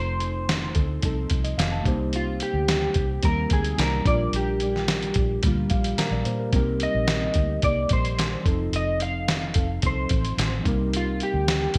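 A slightly broken-up electric guitar through a small old amp carries the wistful, lonely melody of this bedroom pop fragment in C minor at 109 BPM, its chorus and delay floating over a thumb-plucked nylon-string guitar with warbly pitch drift, a reedy electric piano that adds a fill at 5.4 seconds, a round, foam-muted bass and a muffled, thumpy sampler-style drum kit with gated reverb, all set in a bright 1980s-style digital plate ambience.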